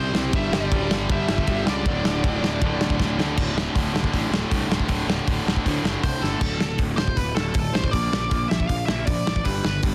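Punk rock at a straight, driving pace, rebellious and energetic, cut from a longer piece: a tight, bright distorted guitar and a biting overdriven guitar tucked in the background pick through riffs over a growly, punchy fuzz bass, while a loose indie kit with dark cymbals and a tight kick sits up front in a small room. A nasal, dark lead guitar with a parked wah and tape echo plays its melody from 0.0 to 3.0 seconds, drops out, then returns at 6.0 seconds, shortly before the tight distorted guitar stops at 6.4 seconds. Drum fills mark the section changes, and the whole mix is dense and heavily limited with light reverb.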